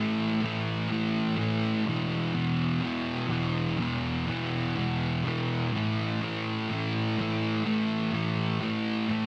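A double-tracked, fuzz-drenched electric guitar sits up front and plays alone in this short, hazy rock fragment, picked in its low register and moving from A5 to E5 at 1.9 seconds and back to A5 at 5.7 seconds. Distortion gives the guitar its grit, while a subtle chorus and analog delay lend its warm tone a dreamy shimmer. A moderate concert-hall reverb surrounds it, and the dense, heavily limited modern master keeps the sound thick and compact.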